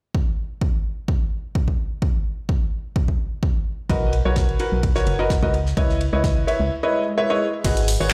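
This piano house excerpt sounds like it is playing through a big sound system in a bare, small room, wrapped in a large studio reverb. An up-front, tape-warm analog kick drives the 128 BPM groove in 4/4 with a light swing on the sixteenths, and the mood is energetic yet bittersweet. At 3.9 seconds a clear, woody upright piano riff enters with audible action noise and a polished, intimate presence, treated with delay and sidechain pumping. Alongside it, a hollow, dark FM bass with an organ-like, fast-attack, decaying tone pumps in its low register, while a damped 70s kit with a fat snare and dark, rolled-off ride cymbal sits far back in the mix. The harmony moves from Bmaj7 to C#m9, and an electronic swell comes in at 6.8 seconds. At 7.6 seconds a punchy analog drum machine adds crash and hi-hat, joined by a ringing, close tambourine softly in the background.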